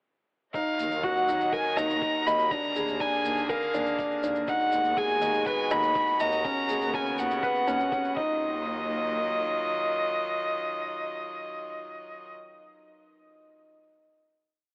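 This short, complete piece of piano and strings electronica in Eb minor moves at 122 BPM in a straight 4/4, opening at 0.5 seconds with a cinematic yet intimate atmosphere. A clear, up-front solo violin carries a motif-based melody of arch phrases with light vibrato and an airy, slightly nasal bow, while a rich string quartet with a reedy, gut-string, period-style tone holds sustained chords beneath it. A felt-muted upright piano, soft and mellow, runs a 16-step arpeggiated riff, and a lush bowed double bass section adds an off-beat bass on Eb with portamento and a sidechain pumping effect. A muffled, thumpy, pitched-down kick drives a four-on-the-floor pulse alongside an overdriven shaker kept in the background, both dropping out around 8 seconds as the drop gives way to a final hit. The strings close at 12.3 seconds and the piano rings on to 14.7 seconds, all heard through light, small-room reverb and a telephone-filtered sound.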